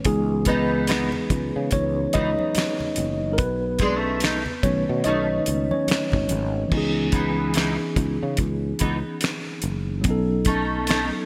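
A swung 16th-note feel at 72 BPM in 4/4 carries this introspective, late-night neo-soul R&B piece in C# minor. A dry, damped 70s drum kit with a fat snare, tight kick, finger snaps and gated reverb sits up front, joined by a growly, punchy fretless bass, while a mellow tine electric piano, heard through its built-in speakers, takes a solo until 6.7 seconds over C#m9 and B9 chords. A fingerpicked classical nylon-string guitar with finger squeak and ensemble chorus adds a second line, and very quiet, thin-skinned congas play from 0.9 to 6.5 seconds, the whole mix set in a lush hall reverb with bright 1980s-style digital production.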